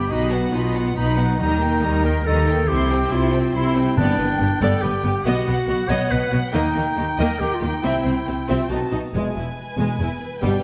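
Triumphant and heroic, this cinematic orchestral excerpt in 3/4 at 140 BPM sets lush, vibrato-rich violin sections carrying the high melody and a background second line over a smooth, close viola section, a distant cello section and a focused double bass section, while an up-front, clear, vintage-toned clarinet weaves a second line until 9.1 s, a hard-mallet timpani stroke lands dry and articulate at 4.0 s, and mellow, roomy French horn and trombone sections enter with sustained chords at 9.1 s as the harmony resolves from B7 to E, all within a moderate scoring-stage reverb.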